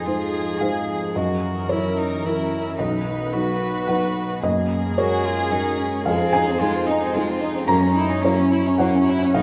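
A felt-muted upright piano sits up front from the very start, its mellow, intimate accompaniment joined at once by a chamber violin section carrying the melody, a single cello playing a second line, and a warbly, lo-fi tape-like pad holding sustained chords with chorus in the background. This fragile, longing neoclassical cut moves in a rubato 3/4 around 110 BPM, tuned to A4 = 438 Hz, and drifts through Fm7, Gb7, B and Gbadd9 before returning to Fm7 and Gb7. The strings are bowed sul tasto with light vibrato and a soft attack, the cello adding an airy bow, while a moderate concert hall reverb gives the close, smooth playing a gentle sense of space.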